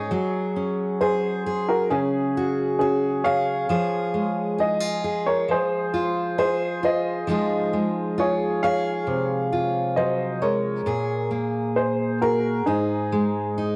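A straight 4/4 pulse at a slow 67 BPM carries this nostalgic, heartfelt folk fragment, tuned to A4 = 439 Hz, where an up-front upright piano with a woody, slightly detuned, vintage tone and long sustain sings the melody from Db4 to F5 across the full 13.8 seconds. Beneath it, a bright, full-bodied jumbo steel-string acoustic guitar is fingerpicked as accompaniment, finger squeaks audible, moving through Gbsus2, Db/F, Fm7 and Bbm9 before settling on Ab5 at 12.7 seconds. Both instruments carry a cassette tape character, and moderate spring reverb with small-room ambience gives the whole thing an intimate home-recorded feel.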